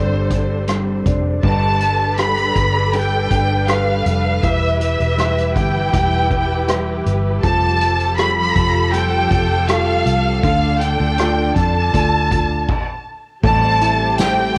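A rich, lush violin section carries the melody up front in this longing, heartbroken pop ballad, its expressive bowed vibrato sounding slightly distant in the studio. Beneath it, a warm concert grand piano with deep bass sits in the background alongside a smooth-topped string section holding sustained chords, while a dark, clean, compressed electric guitar plays fingered arpeggios through analog chorus. A round, punchy, foam-muted fingered bass sits up front, and a roomy, distant drum kit played with soft mallets enters at 0.3 seconds with a punchy kick, medium-tuned snare, rim click, hi-hat and crash cymbal. The violins, piano, strings, guitar and drums carry the colour of cassette tape, and light reverb colours the home-recorded sound. The music breaks into a brief stop at 12.7 seconds before settling onto a minor seventh chord, where a jingly, close and dry tambourine adds a touch at 14.2 seconds as this excerpt of a longer piece ends.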